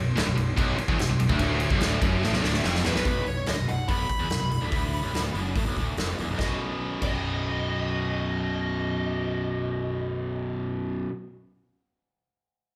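Swaggering and energetic, this hard rock cut-down from a longer piece rides a straight 4/4 groove with the feel of a band playing live together in one large room. A bright, picked, double-tracked overdriven electric guitar sits up front with a low riff from the start, joined until 3.0 seconds by a scooped, high-gain guitar riff tucked in the background. A round, punchy fingered electric bass holds down the bottom throughout, and a huge, natural-sounding arena drum kit with a punchy kick, medium-tuned snare, hi-hat, ride and crash cymbals drives the music from 0.2 seconds, playing a fill from 2.2 to 3.0 seconds as the lead arrives. At 2.9 seconds a dark, bluesy overdriven lead guitar takes up the melody in a higher register and carries it until 10.5 seconds, while the drums drop out at 7.1 seconds. The harmony centres on a B power chord before settling on B at 6.4 seconds, all wrapped in a moderate large-studio reverb.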